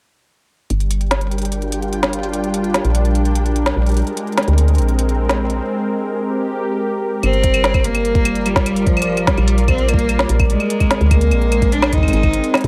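A lightly reverberant, melancholic IDM excerpt opens at 0.7 s on a smooth, detuned sawtooth pad with chorus, a round, woody FM bass under a filter sweep, and an overdriven electronic kit of crisp hats, claves and snare, while from 1.3 s a grainy, flickering granular texture glints in the background until 5.6 s. After a break, a bowed cello with vibrato carries the melody from 7.2 s. It is soon joined by a gritty, thumpy sampler-style kick, over intricate chords moving from Gm7 through Bb9 to Abmaj9.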